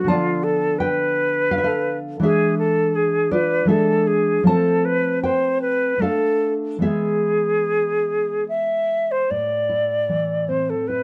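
Melancholic and solemn, this excerpt from a romantic duo for flute and classical guitar moves in a rubato 3/4 at around 72-85 BPM in A minor, tuned to A4 = 441 Hz. Up front, a pure, hollow concert flute sings the tongued melody with vibrato, while a dark, full-bodied nylon-string guitar supplies thumb-plucked accompaniment with audible finger squeak. The harmony passes through Bm7b5/D, E7, F, Dm and E before settling on Am as a new section opens at 9.3 seconds, all within a moderate small-room reverb.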